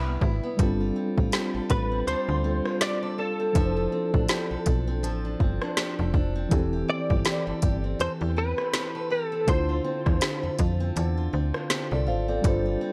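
A mellow tine electric piano fill, boxy picked acoustic guitar arpeggios with tape echo and a snappy, metallic FM slap-style bass open this moody, longing contemporary R&B excerpt at 81 BPM in D dorian with a swung sixteenth feel. A smooth drum kit of soft kick, woody snare, rim click and hi-hat joins a moment later, while a compressed, direct-recorded clean electric guitar carries the melody with chorus and tape echo from 1.7 to 10.9 seconds over a dry, gritty mix moving through Cmaj7, G9sus4, Dm7/F and Am7/E to Dm7.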